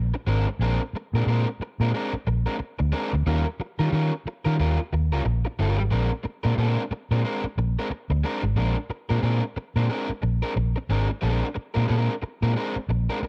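Strutting and playful, this funk fragment moves at 90 BPM in 4/4 with a 60% swing on the sixteenths, set in Bb mixolydian and tuned slightly low at A4 = 439 Hz. A vintage muted fingered electric bass carries the low end from the start, its dark, round, foam-muted tone sitting up front and ranging from G1 to Eb3. A crunchy overdriven guitar joins at 0.1 s as accompaniment, picked and up front, with a cassette tape colouring that gives its grit a worn edge, though it sits quieter than the bass. The harmony rests on Bb9, shifts to Eb9 at 3.3 s, and returns to Bb9 at 5.9 s. A digital ambience surrounds the pair, and the home cassette recording carries lossy compression artefacts, lending the cut from a longer piece a lo-fi, homemade character.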